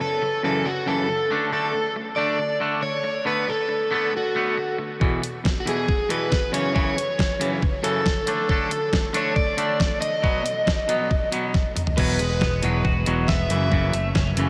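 This upbeat, wistful indie rock excerpt opens with a crunchy overdriven guitar carrying the melody through an analog delay, over a bright, twangy, scooped electric guitar riff that sits up front. At 5.0 seconds a detuned 8-bit drum machine enters with a thumpy kick, a medium-tuned snare, hi-hat, toms and crash cymbal, its sampler-style sound tape-tinged and forward in the mix. The tempo is a straight 138 BPM in 4/4, in E mixolydian, moving through chords such as F#m7, D5, Bm7/D, E and B. A drum fill at 11.5 seconds leads into a repeat of the opening section at 12.0 seconds, where a second clean, compressed twangy guitar riff joins with analog chorus and delay, along with a round, direct picked electric bass. The whole track is soaked in a huge ambient reverb that gives it a dreamy, washed-out glow.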